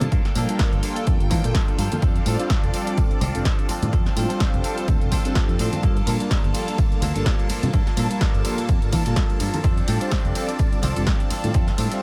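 Funky and groovy, this short cut of filtered disco house rides a swung 16th-note feel, with an up-front, tape-warm electronic kick and a punchy analog drum machine's snare, hi-hat and ride joined by a fingered electric bass with tube saturation, while very quiet ringing congas and tambourine sit in a small room, a clean, compressed semi-hollow guitar plays a phased riff, round, dark synth brass with chorus and a filter sweep fills in accompaniment, and a lush, bright string machine holds sustained phased chords, the brass, strings, guitar and bass all pumping to the kick through Gm9 and F6 changes in a digital ambience.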